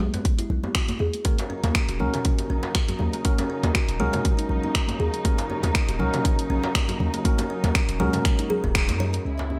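This snippet of spiritual, driving afro house opens on woody, thumbnail-plucked kalimba arpeggios through a low-pass filter and digital delay, over a deep, boomy 808-style bass and close, dry congas. A soft-handed, saturated djembe, a house kit of finger snaps, bright hats and gated-reverb toms, and a punchy, up-front electronic kick join almost at once. At 1.2 s a clean tine electric piano adds delayed stabs, and veiled con sordino strings bring lush bowed chords from 1.3 s, with sidechain pumping on the kalimba, bass, keys and strings, all within a bright 1980s-style digital production with light studio reverb, capped by a band accent at 8.8 s.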